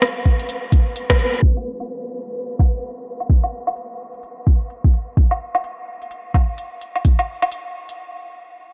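Future garage at 128 BPM in 4/4, with a 60% swing on the sixteenths giving the groove a loose, shuffling lilt. The mood is melancholic and wistful, and this short cut from a longer piece is built entirely from percussion. An organic electronic drum kit of smooth hi-hats, rim clicks and woodblock sits up front, overdriven, with its hats, percussion and snare each darkened by a low-pass filter. A soft, overdriven electronic kick drum enters at 0.3 seconds and drops out at 7.2 seconds. After a band accent at 1.1 seconds, a filter sweep runs over the drums and the mix from 1.4 seconds, and everything halts at 8.0 seconds. The whole dreamy mix is soaked in a huge ambient reverb with a long 7.8-second tail and softened by a low-pass filter, so the hits blur into a hazy wash.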